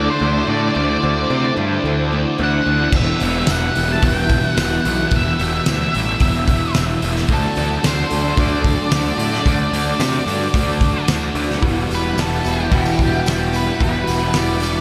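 A hazy, brooding shoegaze and dream pop excerpt in E minor at 110 BPM opens with a dense wall of guitars and strings. A dark octave-fuzz lead guitar carries the melody over a thick fuzz guitar riff with lush chorus, a clean, compressed direct-recorded electric guitar riff touched with reverse reverb, and a very quiet, woody twelve-string acoustic guitar shimmering through picked arpeggios. A vintage string machine voicing cellos holds mellow sustained chords through phaser and ensemble chorus, while a growly, overdriven fuzz bass sits up front. At 2.9 seconds a loose indie drum kit enters with a fat snare, punchy kick and dark cymbals in a pumping room, and a jingly, band-limited tambourine follows faintly at 3.5 seconds. The harmony moves between D and Emadd9, and the whole mix is soaked in a huge, dreamy reverb.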